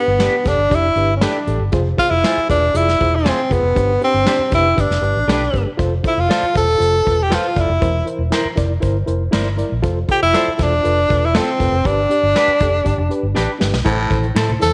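Uptempo 1960s-style soul with an uplifting, danceable feel: a breathy, up-front tenor saxophone carries the melody over reedy electric piano with fast tremolo, a dark, foam-muted fingered bass, twangy guitar stabs with subtle chorus and a brushed drum kit in a small room, with a drum fill at 13.4 seconds leading to a brief raspy baritone saxophone riff, soft low-tuned congas and very quiet finger snaps at the close of this cut from a longer piece.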